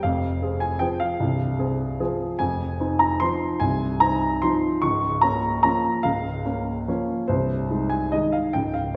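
A lilting waltz pulse in three sways freely under a rubato touch, stretching and easing the beat in this short classical fragment taken from a longer piece. A single warm baby grand piano carries the music alone across its 9 seconds, its natural tone set up front with a short sustain, reaching from C1 in the deep bass up to Db6. The mood is wistful yet elegant, with the harmony drifting from F minor through Fm7 and Bbm over Db before settling onto Ab over C. A wet scoring-stage reverb surrounds the instrument, giving the room a sense of being heard from further back. The playing favors grace and gentle melancholy over display, ending just as the phrase finds its footing.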